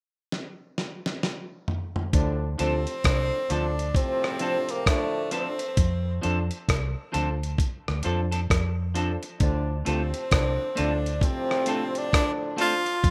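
A bright, up-front tenor saxophone with light vibrato carries the melody in this meditative, serious roots reggae excerpt in D minor at 66 BPM, its line touched by dub echo over a single Dm7 chord. A gritty, compressed sampler-style drum kit with a thumpy kick and fat snare opens with a fill from 0.3 seconds, and at 2.1 seconds the dark, foam-muted fingered electric bass and a mellow horn section with octave doubling and dub echo join in. A clean, twangy electric guitar with dub echo and a clear grand piano playing stabs in the background fill out the rough home-demo mix under light reverb.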